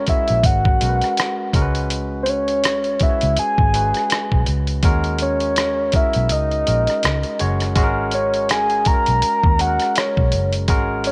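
R&B and neo-soul at 82 BPM with a 16th-note swing, this late-night, smooth excerpt moves from G#m11 to G#9sus4 as a soft octave-layered synth lead carries the melody with a round, chorused, vibrato-touched tone over a barky, lightly overdriven tine electric piano, a dark, foam-muted fingered electric bass and a dusty, gritty sampler-style drum kit of up-front hi-hat, rim click and thumpy kick, the kick dropping out from 6.3 to 7.8 seconds, all set in a light reverb.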